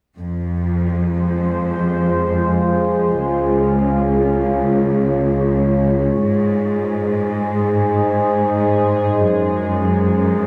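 Up front, a rich, bowed cello section with smooth vibrato carries the bass from 0.2 seconds, joined at 1.2 seconds by a mellow, detuned analog drone of evolving sawtooth and pulse-wave chords with chorus, moving from Fm through Db and Ab to Gbadd9 in this brooding, futuristic hybrid orchestral and electronic film cue, bathed in a wet scoring-stage reverb and cut from a longer piece.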